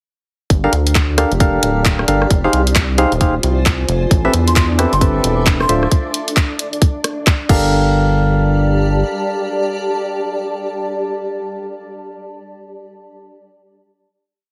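Percussive organ stabs sit up front in this soulful, moody two-step UK garage piece, their hollow, mellow chords syncopated and rootless, coloured by chorus and digital delay. A tight electronic kick drives a four-on-the-floor pulse beneath a garage kit of skipping swung hats, rim clicks, handclaps and crash, while a rubbery square-wave bass bounces through a skipping syncopated line with a resonant filter pluck. A cloudy granular pad drifts behind with built-in reverb and sidechain pumping, its blurred, evolving chords shifting slowly, and a silky vintage string machine adds a soft held high note through the middle of the groove. A breathy jazz flute with vibrato appears briefly and distantly at 4.5 seconds, its short tongued phrases carrying digital delay. The drums stop at 7.6 seconds, leaving a final note to ring on until about 12 seconds, all within a heavily compressed, radio-like sound and light reverb.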